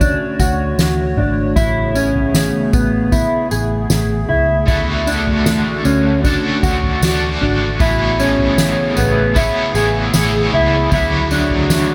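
A warbling, nostalgic pad holds sustained chords beneath a dark, clean electric guitar playing arpeggios up front through lush chorus and digital delay, while a round, foam-muted bass and a soft-mallet drum kit with a fat snare, boomy kick, tambourine and toms set an unhurried 77 BPM dream pop pulse in A major. At 4.7 seconds a bright, overdriven, double-tracked stack guitar joins with tremolo and chorus, thickening the floating, ethereal mood as the harmony drifts between Dmaj7 and Amaj9. Light reverb gives this short excerpt from a longer piece a gentle sense of space.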